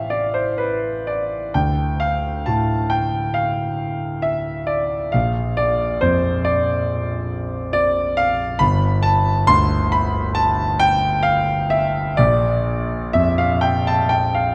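An Am7 chord on a clear, open concert grand begins this hazy, nocturnal passage of impressionist solo piano in D minor, its deep bass and up-front presence spanning G1 to C6 as the harmony moves through Dm, Bb and G5 at a rubato 68 BPM in 4/4, tuned to A4 = 439 Hz and set in a moderate scoring-stage reverb with a 2.2-second decay over its 14.5 seconds.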